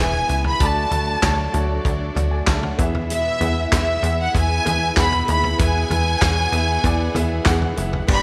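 Anthemic and warm, this piano-driven pop excerpt moves at 96 BPM in a straight 4/4, with a rich, up-front violin section carrying the melody over a concert grand piano, soft sul tasto strings holding sustained chords in the background, and a bright, very quiet picked acoustic guitar riff with audible finger squeak. A punchy, funky analog bass with a sawtooth filter pluck sits up front, while a natural country drum kit with punchy kick, medium-tuned snare, hi-hat, toms, crash and handclaps joins at 0.1 seconds. The harmony shifts between E and D in a small room with light reverb.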